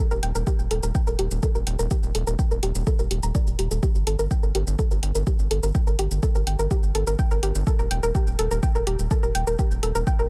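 Dry and close, this dark, dramatic melodic techno excerpt at 125 BPM pairs a soft, round pluck playing arpeggios with chorus, digital delay and sidechain pumping under a filter sweep, with a gritty, saturated, sidechain-pumped synth bass, an up-front, overdriven deep kick entering at 0.5 seconds, and a layered, overdriven electronic shaker and hi-hat, as the chords move from Eb to Gm and back to Eb.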